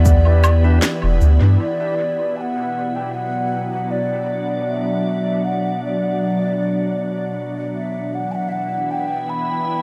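A mellow, hollow wooden flute with vibrato and dub echo sings a distant melody over a bright, organ-like pad with ensemble chorus and gritty 12-bit sampler texture, while a deep, round sub bass sits up front until 1.6 s in this meditative, spacious ambient dub excerpt at 78 BPM in B minor. Woody, tape-toned electronic cabasa, woodblock and snare drum pass briefly through dub echo, and a lightly overdriven tonewheel organ stab with key click surfaces faintly in the background at 0.6 s. A huge ambient reverb surrounds the music as the harmony moves from Em7 to Bm, with flute and pad drifting on until 9.8 s.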